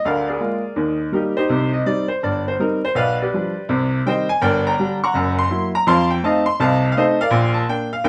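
Swinging and exuberant, this short excerpt of stride piano jazz moves at a brisk 165 BPM in 4/4 with a lively swung eighth-note feel, settling into Bb major and arriving home on a Bb chord at 7.3 seconds. A solo upright piano, clear, woody and up front, carries the whole 8.1 seconds, spanning from deep bass notes to bright upper register. Moderate studio reverb and a layer of vinyl crackle give the recording a vintage, lived-in character.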